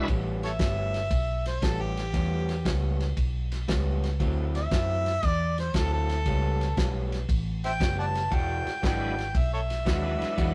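A rough, saturated rehearsal-room sound with light reverb carries this soulful, rollicking electric blues shuffle at 116 BPM in A mixolydian, where an up-front, overdriven harmonica with scooped notes and tongue slaps leads over a round, punchy foam-muted fingered bass, a slightly broken-up lo-fi guitar riff through a small old amp, and a tight soul drum kit with fat snare, kick and dark ride cymbal. Meanwhile a bright, shouting tonewheel organ with slow rotary speaker sounds briefly at the start and returns at 8.8 seconds over the E9 that follows A9, D9 and A9 changes.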